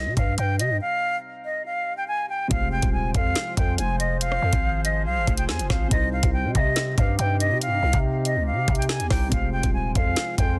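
An airy, tongued flute with unsteady vibrato and a trail of delay opens this dark, ominous half-time drill excerpt over a mellow grand piano with audible action noise in the background and a growling, buzzy 808 bass, while overdriven electronic drums with a knocking kick, woody snare and bright hats come in almost at once, with a break from 0.8 to 2.5 seconds, before an evolving, wave-folded, slow-attack pad with chorus and phaser joins at 2.9 seconds within a dense, heavily limited modern master.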